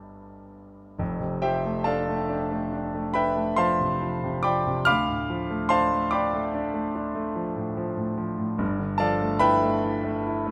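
Luminous and hazy, this impressionist classical fragment, cut from a longer piece, features a clear, polished concert grand piano playing solo in a rubato 9/8, its deep bass and upper register spanning F1 to G6 and sitting present and up front in close, detailed sound with a moderate scoring-stage reverb, as the harmony drifts from G6/9 to F6 at 1.0 seconds, settles on D minor at 4.9 seconds and colours toward G13 at 8.6 seconds.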